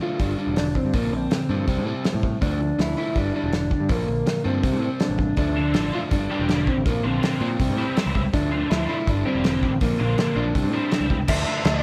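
A lush hall reverb gives this short indie rock excerpt a big arena sound, its mood restless and bittersweet at 162 BPM in a straight 4/4, in D minor. From the opening, a slightly broken-up, lo-fi electric guitar through a small old amp carries the melody, set against a compressed, overdriven guitar riff in a lower register. At 0.2 seconds a round, dark, overdriven picked bass joins alongside a cloth-damped, thuddy drum kit that sits up front, with a tight kick, medium-tuned snare, dark cymbals on crash and hi-hat, and a rolled-off top. At 5.6 seconds a bright, scooped high-gain guitar adds a second riff, thickened with distortion and ensemble chorus. The harmony cycles through G, B-flat, C and D minor shapes, moving to G minor in the second half before coming to rest on D minor.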